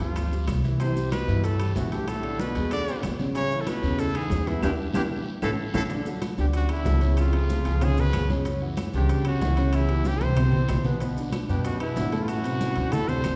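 A straight 4/4 groove at 188 BPM drives this lively, danceable Afro-Cuban jazz cut from a longer piece, built on an up-front, woody pizzicato upright bass, very quiet bright congas, ringing timbales, round low-tuned bongos and woody claves, with a raspy guiro and grainy maracas in the background. A close-miked trumpet carries the melody with vibrato over a growling, gritty baritone saxophone second line and a warm baby grand piano with long sustain, moving from A major to D major at 5.9 s, with a band accent and drum fill leading into the change. The whole band sits in a wet recital-hall reverb.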